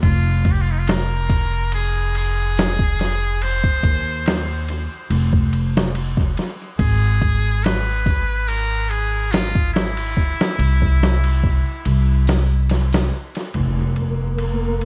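A hypnotic, dark trip hop groove at 71 BPM opens with a muted jazz trumpet solo over a woody, growly pizzicato upright bass and a compressed, pitched-down sampler-style drum kit, all cut from a longer piece. The trumpet's metal mute gives it a buzzy, thin edge with light vibrato, and it sounds distant and roomy beneath vintage 12-bit sampler grit and tape echo. Up front, the bass and the drums carry the weight: a thumpy, muffled kick and a medium-tuned snare, with every kit piece low-pass filtered and touched by tape echo, while a ringing tambourine sits close and dry in the background. The chords move from Fm to Abm and then C, and the kick drops out at 11.9 seconds. At 13.5 seconds an electronic impact lands as the harmony returns to Fm, and at 13.8 seconds a flickering, granular, detuned texture fades in with its own reverb. The whole mix is echo-heavy and dusted with vinyl crackle.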